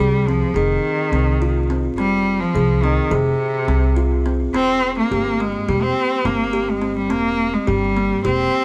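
A clear, focused bowed cello with vibrato carries the melody up front in this pensive, hypnotic contemporary chamber excerpt in 9/8 at 211 BPM (eighths) in F minor, backed by ringing thumb-plucked kalimba arpeggios touched with analog delay and a dark, woody pizzicato upright bass, as the harmony moves from Fm7 to C7/E at 4.5 seconds within light reverb and vinyl crackle.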